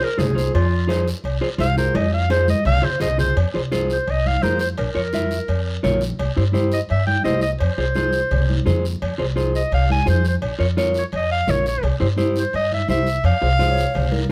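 This cumbia is fiery and danceable, moving at a straight 170 BPM in 4/4 in F harmonic minor, and it is cut from a longer piece. An up-front clarinet carries the melody in a classical style, with a solo passage over the opening 3.4 seconds and a drum fill from 2.0 to 3.4 seconds. Beneath it, a dark, clean electric guitar plays fingered accompaniment and a woody pizzicato upright bass sits prominently, while the harmony cycles through Fm, Bbm and C. Ringing, softly played congas and metal-shelled cowbell and timbales sound distant in a large room, set against a raspy guiro heard close and dry. Near the end, at 13.6 seconds, a breathy, bright clay ocarina slips in from the background with a tongued, reedy, vibrato second line, and the clarinet carries a plate reverb within a lightly reverberant overall sound.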